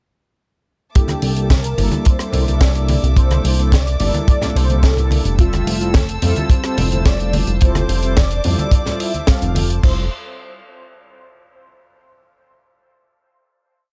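Groovy and feel-good, this short nu-disco piece runs a straight groove from 0.9 seconds, moving from a C13 chord to Fmaj7 before settling on a final chord at 9.8 seconds. A dry, up-front four-on-the-floor kick and a tight funk kit with bright cymbals and a high-tuned snare drive the disco backbeat, with congas played with hard hands in the background and a glossy, dark, chorused synth bass riding a syncopated riff. Over this, mellow synth brass plays rootless dotted-rhythm chords, a rich chamber string section sustains a pumping pad, and a thick, detuned unison lead with dub echo carries hook phrases, all in a close, nearly reverb-free sound.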